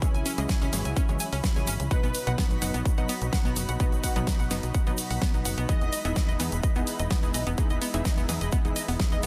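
A punchy electronic kick sits up front in a straight 4/4 at 127 BPM, layered with a pop kit's hi-hat and fat snare and a grainy egg shaker in the background, all in this expansive, driving progressive house fragment cut from a longer piece. Beneath them a tight, nasal sequencer bass of sawtooth and square waves pulses with sidechain pumping, while a round analog pluck runs arpeggios through chorus and dub echo. A lush, warbling vintage pad holds slow-attack chords over a C#m to B to Emaj7 progression, joined by detuned stabs from a unison pluck that also breathe with the sidechain and trail dub echoes. High above, a twinkling granular texture adds octave-up shimmer with its own reverb. A thick, bold unison lead with vibrato and a sub octave surfaces briefly in the background at 1.9 s and again at 5.7 s, all within a dense, heavily limited modern master with light digital reverb.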